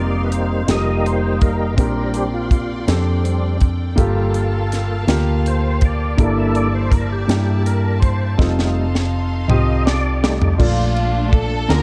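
A tonewheel organ leads this short slow gospel passage, taking a solo over its sustained chords for the first 10.6 seconds, its clean tone coloured by key click, chorus vibrato and a fast rotary speaker. Set in 6/8 at 54 BPM in Bb major, the mood is soulful and uplifting, moving from suspended F chords through Bb69 and Gm9 to F7 before settling on Bbmaj7. Underneath, an intimate upright piano with woody, vintage character and audible action noise plays accompaniment, while a round, punchy hollow-body electric bass sits up front with a dark, amped sound. A tight funk drum kit with a high-tuned snare and bright cymbals enters at 0.3 seconds and plays a fill from 8.4 seconds. A distant, focused string section holds bowed chords high above until 10.6 seconds, when a close, lush string section enters with the melody in a lower register. The production is dark, with light reverb and a small room ambience.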